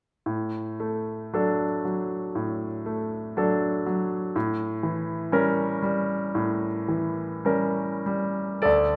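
A bright concert grand piano carries this short, nostalgic romantic nocturne alone, its polished, brilliant tone sitting up front with deep bass and a short sustain across a range from D2 to D5. The tender phrasing moves freely in rubato over a gently unhurried pulse, opening on a D chord over A before shifting to a tense A7b9 at 4.3 seconds. A moderate recital hall reverb surrounds the playing in this brief fragment cut from a longer piece, which ends at 9.0 seconds.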